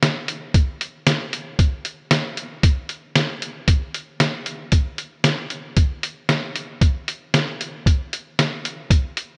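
Country drum groove at 115 BPM in a straight 4/4, heartfelt and nostalgic in mood, cut from a longer piece. A lo-fi sampler-style kit of hi-hat, thumpy kick and medium-tuned snare plays alone from 0.0 to 9.3 seconds, its compressed, pitched-down, muffled sound sitting up front. Light reverb and digital ambience give the rough home demo mix its character.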